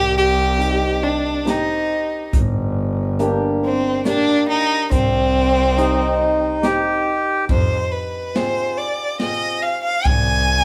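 Recorded live by a band in one room with moderate studio reverb, this bittersweet, festive klezmer piece moves at 70 BPM in 3/4, is cut from a longer piece, and is tuned to A4 = 438 Hz. A close, smooth, bowed violin with vibrato carries the melody up front over a clear, intense bowed double bass, and at 0.6 s a bright, shimmering hammered dulcimer and a dark swinging big-band drum kit with a punchy kick enter. A reedy accordion adds a brief second line from 5.8 s, and at 7.5 s the music shifts from C minor into F dorian sharp4.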